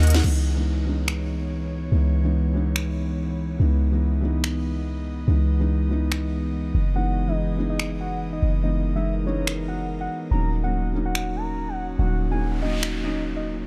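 Future bass excerpt at 143 BPM with a half-time, lightly swung feel in C# dorian, bittersweet and dreamy, where a deep, boomy 808-style bass with tube saturation sits up front under a trap kit of sharp snare, crisp hats, finger snaps and crash in a small room, a felt-muted upright piano with audible action noise plays intimate chords moving from C#m7 through F#13sus4 to D#m7, an airy, breathy chorused pad holds sustained chords from 0.7 seconds, a round octave-layered synth lead with chorus, vibrato and dub echo carries the melody from 7.0 seconds, and a noise sweep enters at 12.3 seconds, all with little reverb.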